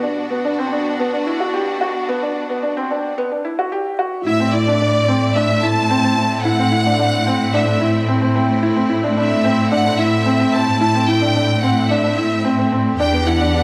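A moderate scoring-stage reverb and small-room ambience surround this high-pass-filtered piece of moving, cinematic piano and strings electronica in A dorian at 110 BPM, cut from a longer work. A felt-muted upright piano, mellow and intimate with tape echo, plays an up-front riff over sustained chords from a clear symphonic string section through a filter-swept build-up. At 4.3 seconds the drop brings in a focused violin section carrying the vibrato melody and a lush, bowed cello section on the bass, with the harmony moving from Bm to Am and closing on Em7 at 13.0 seconds.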